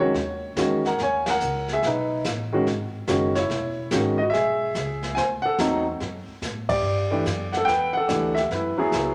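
A clear concert grand piano opens this jazz trio excerpt and carries the melody up front, its deep bass register and natural tone sitting ahead of a woody pizzicato upright bass and a brushed drum kit with punchy kick, hi-hat and ride cymbal, both entering at 0.1 seconds. The swinging 4/4 feel is sophisticated and warm, moving through chords such as D#m7, B7, E6 and Gsus2, with the band hitting accents together at 1.2 and 6.6 seconds. A wet large-studio reverb gives the trio a roomy, spacious setting.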